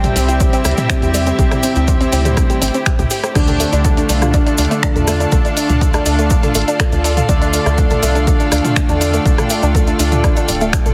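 A punchy, up-front electronic kick propels this cinematic, driving melodic techno excerpt in D minor at 122 BPM, with a tight, saturated sawtooth sequencer bass and an analog drum machine of crash, finger snaps, hi-hat, rim click and toms alongside a grainy cabasa. Fat, brassy synth stabs with chorus and delay sit over background arpeggios from a woody, nasal wave-folded pluck, while an evolving, warbling wavetable pad holds sustained chords above a lush, dark studio string section texture, all pumping to the sidechain as the harmony moves from C to Dm at 3.4 s. A very quiet, tense bowed-like drone with phaser and vibrato enters at 1.7 s, and the whole mix has a heavily compressed radio sound with light reverb.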